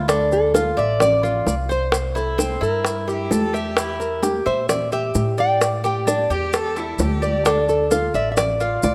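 A fingerpicked nylon-string guitar carries the melody over a mellow, metallic Cuban tres playing arpeggios and a woody, thumpy pizzicato upright bass, while tight high-tuned bongos, distant ringing congas and grainy maracas drive this danceable, sultry D minor son and guajira at 130 BPM, with a focused, bowed cello adding a vibrato second line from 3.1 to 7.3 seconds in a lush hall and a rough demo mix.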